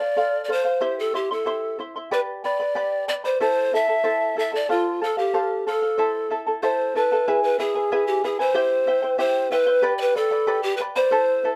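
A light reverb gives this short fragment of Andean folk music a modest sense of space, with both instruments sitting up front. The mood is wistful and melancholic, carried by a steady two-beat metre with a straight feel. A breathy bamboo pan flute carries the melody from the first second, its crisp, chiffy attack and warm vibrato giving each note a human, airy edge. Beneath it, a mellow acoustic charango is fingerpicked on its double strings, some of them octave-doubled, producing a shimmering accompaniment pitched partly above the flute. At 7.3 seconds the music moves into a new section as the harmony shifts to E before cycling back through the familiar C and G chords. The pan flute stops at 11.5 seconds, and the charango rings on until 11.6 seconds, where the fragment is cut from the longer piece.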